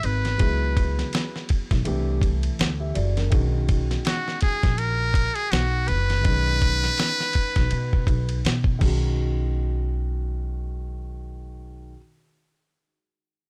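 Cool and smooth, this jazz-hop cut sits at 82 BPM in B major with a swung 16th-note feel, a dusty sampler-style kit with a thumpy kick and fat snare up front, and a woody pizzicato upright bass carrying tube saturation. A buzzy, breathy muted trumpet leads with light vibrato and scooped notes until 8.4 seconds, over a dark, mellow grand piano whose action noise adds intimacy as chords move from C#m7 through C69 to Bmaj9. The drums drop out at 9.0 seconds, leaving piano and bass to settle on Badd9 in a dry, gritty small-room sound.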